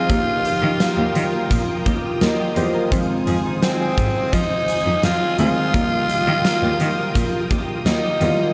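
A raspy, gritty tenor saxophone leads this urgent, dramatic stretch of 1980s-style pop, sitting up front with light vibrato and a tape echo trailing its punchy melody. Beneath it, analog keys built from detuned pulse and sawtooth tones with a sub octave give round, decaying accompaniment, colored by chorus and a filter sweep. A bright, intense bowed cello plays the bass line with vibrato from 0.1 s, close and played by a single player, while a huge arena drum kit with a fat snare and punchy kick pumps in a roomy hall. In the background, a clean, twangy twelve-string electric guitar picks a compressed riff through lush chorus and tape echo, and a vintage string machine voicing violas holds soft-attack chords shimmering with phaser and ensemble chorus. The harmony moves from Ebadd9 to Fm7 and back, all wrapped in a lush hall reverb and a dark production, in a short cut lifted from a longer piece.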